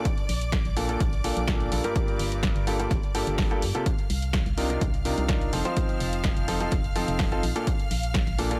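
Piano house at 126 BPM in a straight 4/4, bittersweet and soulful, moving through Bbmaj7, Gm9, Cm11 and F7 before returning to Bbmaj7. A bright, up-front grand piano with audible action noise carries the riff through a low-pass filter and delay, while a lush, bowed string section holds sustained chords high above, both pumping against the sidechain. A punchy, tape-flavoured electronic kick and an analog drum machine's hi-hat and snare drive the groove, and a hollow, organ-like FM bass enters at 0.3 s with fast-attack, decaying notes, all set in a digital ambience in this short cut from a longer piece.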